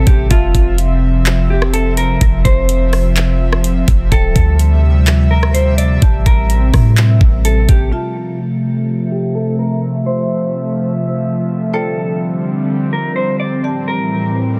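A dense, heavily limited modern master wrapped in digital ambience gives this atmospheric cloud-rap cut a floating, dreamy haze, taken from a longer piece and set at 126 BPM in a half-time 4/4 feel in F major. An airy, breathy pad sits up front throughout, its detuned sawtooth and triangle layers, noise and ring modulation blooming slowly into soft, full-bodied chords treated with chorus, sidechain pumping and a low-pass filter. Over it a dark, clean electric guitar carries the fingered melody, softened by vibrato, a low-pass filter and digital delay, while a woody marimba struck with hard mallets adds bright, percussive texture in the background. For the first half a boomy, sine-like 808-style bass with a fast attack and decaying tail anchors the low end alongside a produced electronic R&B kit of knocking kick, metallic hi-hats, handclaps and rim clicks, both placed up front. At 7.9 seconds the bass and drums drop away, and a filter sweep runs to the close at 14.6 seconds, leaving the pad, guitar and marimba suspended over the repeating Fmaj7, Dm11 and Am7 progression.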